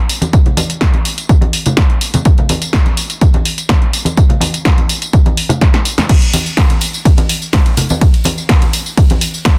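A funky, joyful house excerpt opens with a punchy, tape-warm analog drum machine of snare, hi-hat, ride, crash and tambourine, its hats and cymbals pumping under sidechain, alongside ringing, close and dry acoustic tambourine and congas played with soft hands, low-pass filtered and pumping, before an up-front electronic kick enters at 0.3 seconds, all set in a dense, heavily limited mix with little reverb as a filter sweep rides the drums until a fill at 5.6 seconds leads into the drop at 6.1 seconds.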